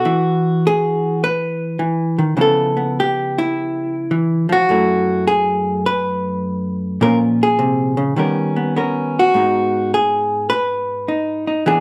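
A vintage hollow-body electric jazz guitar opens this short solo jazz excerpt, playing alone from the first moment to its end at 11.8 seconds. The mood is moody and smoky, set at 104 BPM in 4/4 with a swung eighth-note feel. The guitar's tone is dark and clean, picked and compressed, sitting up front in the mix and ranging from F#2 to B4. Its harmony moves from Eadd9 through C#7alt and F#m9 to A#m7, D#7b13 and finally G#m7, giving the passage a rich, searching jazz colour. A light reverb surrounds the sound, and the clip is tuned slightly low at A4 = 439 Hz, cut from a longer piece.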